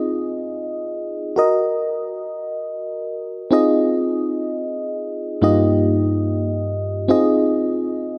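In free time, this brief pop passage cut from a longer piece feels romantic and uplifting, carried entirely by a solo mellow FM electric piano that spans from G2 to Eb5. The piano sounds round and dark, with a fast attack, decaying notes, a noise layer and a chorus shimmer, sitting up front in a lush hall reverb. It drifts through Ab6, Ebm and Ebadd9/G chords before settling back on Ab6 at 7.1 seconds.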